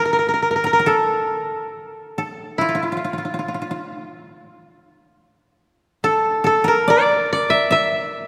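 Two kotos sound together from the opening, a bright, fingerpicked lead melody up front and a softer, mellower second line beneath it, both plucked in the register from E4 to E5 with a woody attack. This short excerpt of Japanese chamber music moves in a free, rubato pulse and feels solitary and austere. The plucked notes ring out into a long, reverberant church-like space.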